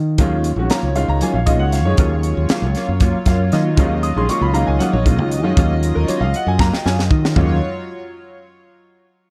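Set in 7/8 with a straight feel, this funky, intense electric jazz fusion piece opens on a round, dark fingered bass, and at 0.2 seconds it is joined by a crisp, up-front drum kit with a high-tuned snare and tight kick, a clear, boxy baby grand piano, a shimmering retro pulse-width pad, and mellow, compressed electric guitar stabs set in the background, with a piano fill at 3.0 seconds and a drum fill at 6.6 seconds, all in a small room.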